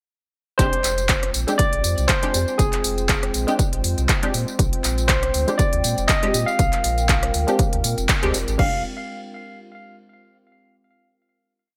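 A barky, lightly overdriven tine electric piano carries a bright, motif-based melody through digital delay in this moody, deep house piece at 120 BPM in F dorian, swung on the sixteenths. Beneath it, a warbling, nostalgic tape-like pad holds dark sustained chords with chorus and reverb, while muted, phased dub chord stabs and a mellow sine sub bass with octave play syncopated parts, all pumping against a punchy four-on-the-floor electronic kick. The up-front drum kit adds smooth programmed hats, handclaps, rim clicks, tambourine and crash, with a band accent at 8.1 seconds before a final chord rings from 8.6 seconds.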